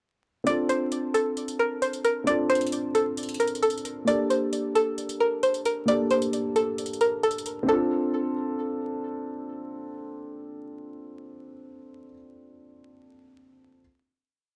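A half-time trap beat at 133 BPM drives this brooding, hard-hitting hip hop piece in D minor, where metallic electronic hi-hats with fast rolls run until 7.6 seconds while a twangy, string-like resonator pluck with chorus and tape echo loops an up-front melody over held, close-voiced Dm7 and Gmadd9 chords from a dark, boxy concert grand piano, which settles on a final Dm7 at 7.7 seconds and carries on alone after 9.0 seconds, the whole piece heard as a dry, gritty hardware recording with vinyl crackle in a small room.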